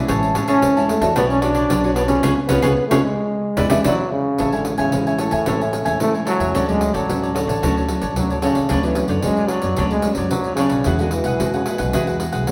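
Crisp, picked cavaquinho and full-bodied, fingerpicked nylon-string guitar open this festive, lively samba-choro excerpt, joined almost at once by woody, thumpy pizzicato upright bass on gut strings and a jingly pandeiro played with soft hands. At 0.5 seconds a breathy, mellow trombone takes the solo melody up front, whispering in an intimate jazz style with vibrato, a soft attack and a smooth top. The band hits a shared accent from 2.2 to 4.4 seconds before moving into a new section, all playing live in one room wrapped in a wet, large studio reverb.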